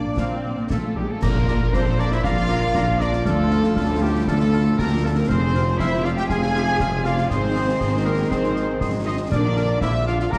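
Heroic and adventurous, this short cut from a cinematic film score sets a very quiet, lush violin melody over a full orchestra: a present trumpet section's warm stabs, a clear oboe, a bright clarinet, a mellow hollow flute and a second violin line weave above rich violas, a ringing harp's arpeggios, distant French horns and vintage trombones holding chords, while expressive cellos, a close-miked tuba and distant double basses carry the bass, and snare, bass drum and bright cymbals drive beneath a dark cymbal-and-bass-drum accent at 1.2 seconds and round soft-mallet timpani hits at 5.3 and 9.3 seconds, all bathed in a dark concert hall reverb.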